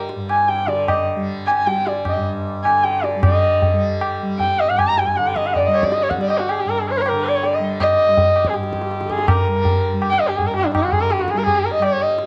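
A homey cassette recording in a lightly reverberant room opens this meditative, introspective fragment of Hindustani classical music, cut from a longer piece in four. A softly plucked, buzzing tanpura lays down a shimmering drone from the first moment, joined almost immediately by high-tuned, ringing tabla. At 0.3 s a dark, nasal sarangi comes up front, its single bowed voice gliding with light vibrato and portamento over earthy sympathetic strings, and the music moves into a new section at 3.2 s while the pace quickens throughout.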